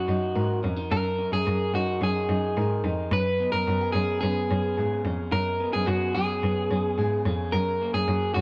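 A roomy echo chamber with a 2.4-second decay surrounds this short, echo-heavy fragment of jangly indie pop, which moves at 109 BPM in a straight 4/4 with a bright, youthful mood. Across the full 8.4 seconds, a picked electric guitar through a small old amp carries the melody between F#4 and B4, its tone warm, slightly broken-up and lo-fi, with analog delay trailing each note. A second picked electric guitar through a similar amp plays arpeggios from F#3 to A#4, sitting up front with a darker, slightly broken-up edge and bathed in spring reverb and analog delay. Underneath, a single bowed cello takes the bass line between E#2 and G#2, clear and focused with vibrato and placed up front. The harmony moves from D#m7 to C#7sus4 at 3.1 seconds and settles on F# at 7.5 seconds.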